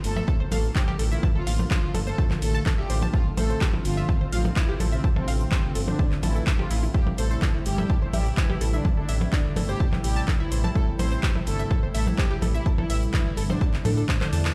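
Melodic techno at 126 BPM in 4/4 with a straight feel, this dark, melancholic excerpt sits in A phrygian and moves through Bbmaj7, Dm7 and Am7. A punchy, layered electronic kick sits up front from 0.3 seconds, beside a techno drum kit of handclaps, metallic hi-hats, percussion blips and shaker, with sidechain pumping on the hats and percussion. A round, deep analog bass with tube saturation and its own pumping anchors the low end. In the background, a bold, wave-folded analog synth brass carries the melody with chorus, vibrato and dub echo, shadowed by a smooth, bowed symphonic violin section playing a second line through delay. A resonant, evolving pad with ring modulation, a slow attack and a filter swell holds sustained chords, and a tight, detuned sequenced synth runs driving arpeggios from 0.2 seconds with chorus and delay. The sound is dry overall, heard as if through a big sound system in a bare room, and a short drum fill arrives at 14.2 seconds.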